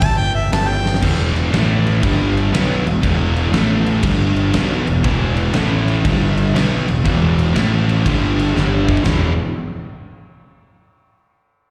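A swung 4/4 groove drives this brooding, smoky blues rock power-trio excerpt with a southern rock edge, opening with a clear, scooped, lightly vibrato-laced harmonica solo through overdrive and slapback echo over a growly fuzz bass and a big, dark drum kit with fat snare, punchy kick and china cymbal, before a sludgy double-tracked guitar takes over at 1.0 seconds with a riff cycling E5, A5 and G5 power chords, a drum fill arriving at 8.6 seconds, all heard like a live gig through the venue's PA in a recital-hall reverb.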